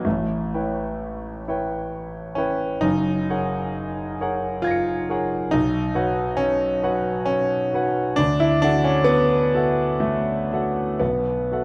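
Mysterious and wistful, this short excerpt of impressionist classical solo piano unfolds in a rubato 3/4 at around 60-70 BPM, its clear, up-front concert grand spanning F#1 to C#7 with deep bass and long sustain through chords of A9, F#69, Badd9, Dadd9 and B7sus4, set in a moderate concert hall reverb of 1.9 seconds within a dark, warm production.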